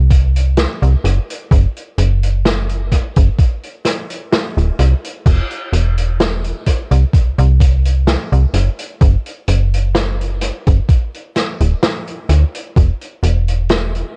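Melancholic and nostalgic, this short vaporwave fragment, cut from a longer piece, moves at an unhurried pace in 4/4 with a light swing on the sixteenths. A slap-like FM bass sits up front from the start, its snappy, metallic attack and digital decay running low through the whole 14 seconds. An electronic kick drum with a sampler-style thump and tape-warmed body joins almost at once and drops out at 13.0 seconds. Behind it, a vintage acoustic drum kit of crash cymbal, hi-hat and snare plays in a studio room, mid-forward, saturated and gritty, with dark cymbals, a medium-tuned snare and a rolled-off top, its sound trailed by tape echo. The mix is echo-heavy yet nearly dry of reverb, with a cassette-tape character that suits the wistful mood.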